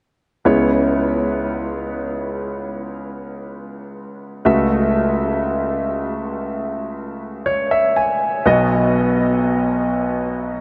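A straight, slow 4/4 pulse at 60 BPM carries this heartbroken, longing pop excerpt in C# minor, where a clear, polished concert grand piano with deep bass and a subtle chorus sits up front as accompaniment from 0.5 s, moving through C#m7, F#m7/C# and B, adding a fill from 7.0 to 8.5 s, all soaked in a huge, dreamy ambient reverb with a 7.6 s decay.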